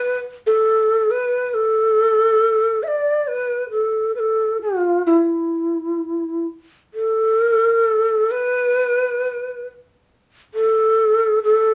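Free-flowing rubato around 62-70 BPM in a loose 4/4 carries this calm, austere fragment of Japanese traditional chamber music, cut from a longer piece. A lone end-blown bamboo shakuhachi plays long, breathy, warm tones with soft attacks and vibrato across the range from E4 to E5, sitting up front throughout and moving into a new section at 7.0 seconds. A moderate booth ambience, studio reverb and the character of cassette tape frame the austere sound.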